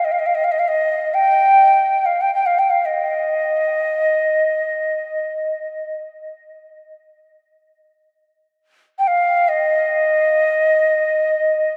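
A huge, wet ambient reverb with a 4.1-second decay surrounds this short recording, giving the space a calm, peaceful stillness. A lone Native American-style cedar flute carries the piece from 0.0 to 11.8 seconds, sounding woody, airy and hollow, with a mellow, straight tone and tongued notes. Tape echo colors the flute, and the flute sits up front in the mix while still feeling somewhat distant. This meditative world music unfolds in free time within an Eb major pentatonic scale, the flute staying between Eb5 and G5. The clip is cut from a longer piece and holds a single unbroken mood throughout.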